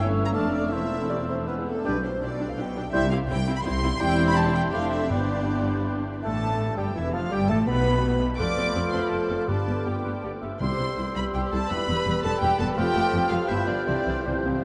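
Bathed in a huge, wet reverb that sets the players in a vast, echoing hall, this quick classical-period symphony movement in C major moves at 164 BPM in 3/4 with uneven, rubato beats and a restless, dramatic mood, cut from a longer piece. Intimate violins with light vibrato carry the melody while a second violin line, a dark clarinet, a hollow silver flute and a background oboe weave supporting lines above a mellow bassoon and expressive violas with portamento. French horns hold sustained chords, cellos and a focused double bass section anchor the bass, and soft-malleted timpani on calf heads stay very quiet, adding a fill from 13.9 seconds as the harmony resolves through G7 to C.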